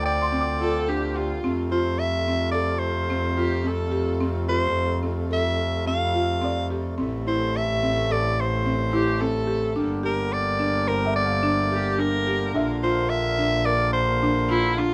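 In light reverb, this urgent, pensive piece of contemporary chamber music in 5/4 sets a raspy, up-front soprano saxophone melody over reedy harmonium chords, woody arpeggios from a buzzing marimba and a rich bowed double bass, while a smooth viola adds a second line from 0.6 s and a felt-muted upright piano lends soft background texture until 2.0 s and again from 6.4 s.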